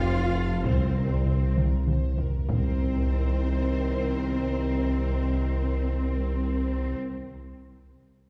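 This tense, vast cinematic cue blends orchestral and electronic textures in a slow 6/8, cut from a longer piece. Two violin sections carry the melody and a second line with lush, vibrato-rich bowing, the warm lead sitting in the background beneath a focused upper voice, while a very quiet viola section adds expressive portamento and a very quiet, mellow French horn section holds sustained chords. The low end is dense: a saturated, thick sub bass sits up front, joined by a mellow solo tuba, a rich studio cello section and a very quiet double bass section, with a round, wave-folded analog bass riff heard only until 2.4 seconds. A heavy-stick taiko ensemble enters at 0.6 seconds with a fill before the music shifts at 2.5 seconds, and a dark, ringing harp-like synth pluck with a chorus and filter sweep adds brief arpeggios near the start. The whole mix sits back in a concert hall with a long, wet reverb and a softened top end.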